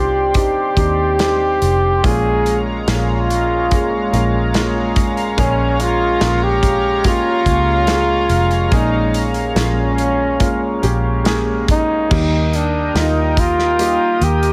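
A close, lightly reverberant small-room sound frames this tender, emotional pop ballad, cut from a longer piece. Up front, a mellow flugelhorn carries the melody in a jazz style with a soft attack and light vibrato, trailed by a delay. Beneath it, an intimate concert grand piano plays the accompaniment with deep bass and audible action noise, while a shimmering, retro pulse-width pad with chorus holds bright, slow-rising sustained chords. A dark, round, foam-muted fingered electric bass sits forward and punchy, and a loose acoustic indie drum kit enters at 0.3 seconds with a tight kick, a medium-tuned snare, hi-hat and crash cymbal. The harmony moves from Cmadd9 to a long stretch on Bbm7, then opens onto Eb at 12.1 seconds as a new section begins.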